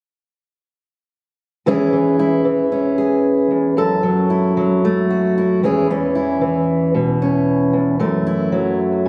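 Nostalgic and hopeful, this short folk piece, cut from a longer performance, moves at 114 BPM in a straight 4/4 in E major. A fingerpicked steel-string acoustic guitar plays alone from 1.7 to 9.1 seconds, ranging from E2 up to A4 with a dark, up-front tone, audible finger squeaks and tape echo. The harmony moves from E6 to F#m7 and back, and a second section beginning at 5.9 seconds opens on E5 before returning to F#m7. The guitar sits in an auditorium-like space, with a moderate echo chamber reverb lasting about 1.5 seconds. Captured on a phone in the room, the sound carries a club's reverb and a compressed feel.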